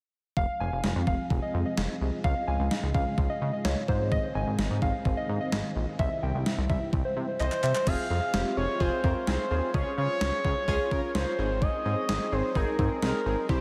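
In a straight 4/4 feel, an up-front gated 80s digital drum machine with thumpy kick, overdriven gated snare, handclaps and crash drives this melancholic, cool synth-pop passage over a glossy, nasal chorused synth bass, while a warbly, dusty lo-fi pluck and dark, vintage string-machine cellos under a filter sweep fill the opening until about 7.8 seconds; a smooth, expressive synth lead with vibrato enters at 7.4 seconds alongside a drum fill, and round, detuned analog keys with phaser join at 7.9 seconds, in a dreamy mix soaked in huge ambient reverb.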